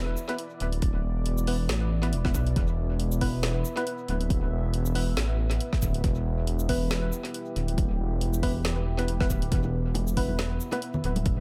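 A swung, half-time groove drives this cavernous, heavy deep dubstep piece, with a layered electronic kick arriving at 0.8 seconds beneath a drum kit of woody snare, dark hi-hats and shaker touched by tape echo. A rumbling, detuned sawtooth bass sits up front, while a hollow, percussive organ stab with chorus and tape echo and a moody, warbling pad with slow attack and long release fill the space. Bright, close bongos and congas enter at 9.6 seconds, and a reedy, airy shakuhachi flickers in the background at 10.2 seconds through dub echo, set in an echo-heavy mix with light digital ambience.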